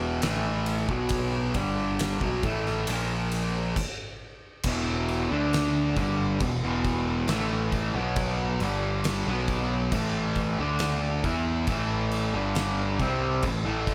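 Stoner and doom metal at a slow 68 BPM in E minor, this brooding, hypnotic excerpt is cut from a longer piece. A double-tracked fuzz guitar sits up front with a warm, distorted riff, moving from E minor to A#5 before everything drops into a stop from 3.8 to 4.6 seconds. A growling picked electric bass, bright and overdriven, holds down the low end beneath it from the first moment. The oversized low-tuned drum kit enters at 0.2 seconds with a punchy kick, fat snare, dark cymbals and a gritty, saturated sound that pumps in a bright stone room. After the break the riff returns on E minor and shifts to A5 at 11.7 seconds, all set in a small room ambience.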